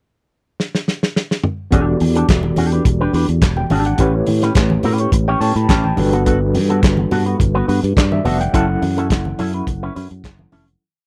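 Driving and sultry, this short disco piece opens with a muffled soul drum fill at 0.6 s, then settles at 1.7 s into a four-on-the-floor beat with off-beat open hats and a clap-layered snare, joined by a growly octave bass with slides and chromatic approach notes, choppy sixteenth-note guitar through an envelope filter and lush chorus, and a barky overdriven tine electric piano holding spread chords with medium tremolo and short fills, with a very quiet, low-tuned conga groove entering at 2.0 s, all in a dry, close 1970s-style studio sound that fades out from 8.5 s.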